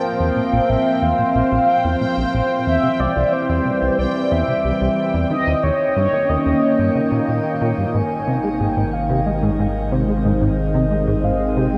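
Drenched in a huge, dreamy reverb, this mysterious, expansive stretch of sequencer-driven ambient space music pairs a mellow, horn-like synth lead with a detuned, resonant pad under chorus and phaser, a faint bubbling texture of random filter steps, and a punchy, plucky analog bass riff that carries a filter sweep until 7.9 seconds, when a deep, round sine sub bass joins for the closing chord.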